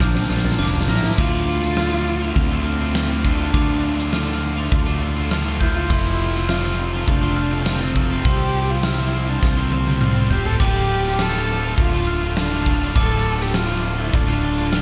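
A huge arena drum kit sits up front with a fat snare, boomy kick and bright cymbals, rolling through a build-up fill in the first 1.2 seconds and another at 9.4 seconds, while a growly, fuzz-laden fingered electric bass drives this brooding, cinematic post-rock piece in D minor at 102 BPM. A dark, woody cello carries the vibrato melody, and a bell-like glockenspiel with brass mallets rings out arpeggios behind it, both trailing a diffuse ambient delay; a very quiet, twangy clean guitar adds arpeggios only at the opening. Underneath, a raw garage guitar with overdrive and analog chorus and a tight distorted guitar play riffs in the background, all steeped in a dreamy plate reverb.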